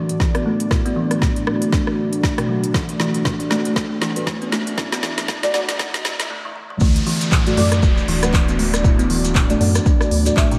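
A dreamy, reverb-soaked mix with a lush hall ambience frames this earthy, spiritual afro house excerpt. A moody, evolving analog pad and a soft chord stab treated with chorus, phaser and delay pump under the sidechain, alongside a plucked, mellow kalimba whose arpeggios run through a filter sweep and delay, while a layered deep house kit of woody snare, smooth hats, handclaps, rim click and toms plays a fill beside an up-front deep kick, and an electronic riser and downlifter sit in the background from 2.0 s. After a brief break at 6.3 s, the drop at 6.8 s brings in a rumbling, detuned sawtooth bass and grainy, vintage maracas.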